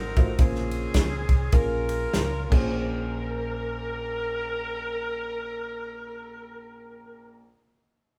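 A mellow, loose saxophone section carries the melody of this fervent, solemn gospel fragment with jazz-style vibrato and a distant, roomy tone. A punchy, up-front acoustic drum kit of kick, snare, crash and ride joins at 0.2 seconds, playing until 2.6 seconds before dropping out. Beneath the horns, a round, amped hollow-body electric bass and a dark, woody upright piano settle onto a Bbm9 chord, with the band captured live together in one room under light reverb.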